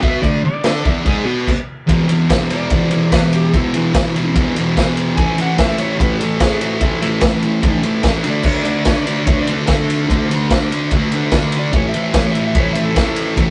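This raw, swaggering garage rock excerpt from a longer piece opens with a thick, double-tracked fuzz guitar riff, a gritty acoustic drum kit and a slightly broken-up slide guitar, all together from the first beat. The fuzz guitar sits up front, its picked, distorted riff ranging from low E2 up to D5 and moving through D5, B5, E5 and A5 power chords. The drums share that forward spot, with a punchy kick, a medium-tuned snare, and dark crash and ride cymbals in a small, pumping room whose saturated sound has a rolled-off top. Behind them, the fingered slide guitar carries the melody between E4 and G#5 with a warm edge, tuned slightly sharp to A4 = 441 Hz. A brief stop at 1.5 seconds breaks the straight 146 BPM 4/4 drive before the band kicks back in at 1.9 seconds, and the rough rehearsal-room recording, with its moderate reverb and dulled highs, keeps the whole thing scrappy and close.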